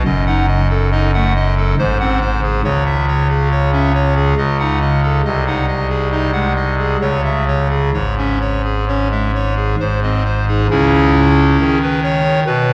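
A classical, chorale-style piece for solo pipe organ, dark and solemn, moving slowly at 64-70 BPM in 3/4 with a rubato feel in C# minor. The organ speaks through a clarinet reed stop, hollow in tone with baroque voicing and a touch of chiff on the attacks, sitting up front and spanning F#1 to F#5. The harmony leans on diminished and half-diminished colours that resolve through G#7 back to C# minor, settling on a G# chord around 9.8 seconds before returning to C# minor at 10.7 seconds. A long, wet church reverb of 3.6 seconds surrounds the instrument, and the production is dark and warm. Cut from a longer piece, the excerpt lasts 12.7 seconds, with a brief new section beginning at 10.7 seconds.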